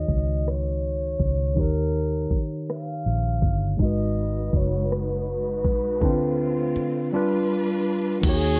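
A breathy, distant flugelhorn with a slapback echo carries a sultry, late-night melody over bright, clean tine electric piano and a round, foam-muted fingered bass, joined at 0.1 seconds by a smooth electronic R&B kit of knocking kick, hi-hat, rim click and crash, with veiled con sordino strings entering at 3.8 seconds and a low-pass filter sweep shading this slow six-eight R&B fragment of a longer piece.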